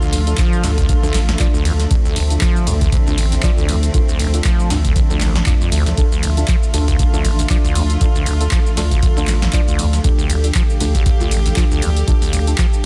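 A swung 118 BPM 4/4 groove of deep, analog electronic kick and a punchy, tape-warm drum machine with snare, handclaps, hi-hat, ride cymbal and cabasa drives this gritty, trippy acid house passage in D minor, cut from a longer piece and holding on a single D minor chord, where a squelchy, resonant sawtooth acid bass riff with filter sweep, chorus and tube saturation runs alongside a thick, saturated sine sub bass that enters at 0.1 seconds; an intimate chamber string section bowing sul tasto with light vibrato sustains chords, dark detuned chord stabs with chorus, phaser and analog delay arrive at 0.3 seconds, and a cloudy, wave-folded granular pad drifts behind them, with the strings, sub bass and pad all pumping to the sidechain in a dry, dense, heavily limited mix.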